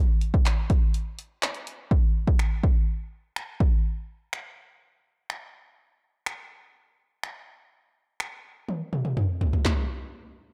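A punchy analog drum machine opens this driving, bittersweet pop excerpt at 0.2 s, setting a straight 4/4 pulse at 124 BPM with kick, snare, hi-hat, handclaps, finger snaps and toms. After a brief break near 0.9 s the beat carries on, reaching a drum fill at 8.7 s. The machine sits up front with a hard-hitting kick and snare, a short room on the snare, claps and hats, and a dark, dry production.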